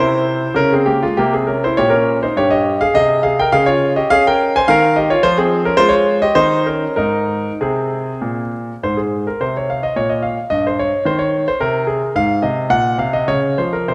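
Solemn and introspective, this short baroque-style suite movement in Ab major unfolds in 3/4 at a rubato 95-111 BPM on a solo concert grand piano, heard up front with intimate clarity, deep bass, long sustain and audible action noise, ranging from G2 to Ab5 across two statements of the same opening section within a moderate reverberant space, the passage cut from a longer piece at 13.9 seconds.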